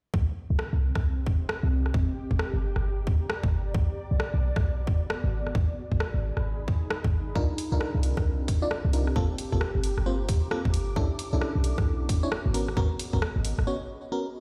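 UK garage in a swung two-step at 133 BPM, this late-night, soulful excerpt pairs a punchy, tight 808-style bass and an up-front electronic kick with bright hi-hats and rim clicks, under an ethereal, detuned pad that pumps with sidechain and shimmers with ensemble chorus, while a glassy, bell-like FM electric piano with warbling chorus and digital delay adds stabs from 7.4 seconds over minor chords moving from Cm through Gm11 and Bm11 to Abm11, all heard through the stone-room reverb of a big sound system in a bare space before a brief break at 13.7 seconds.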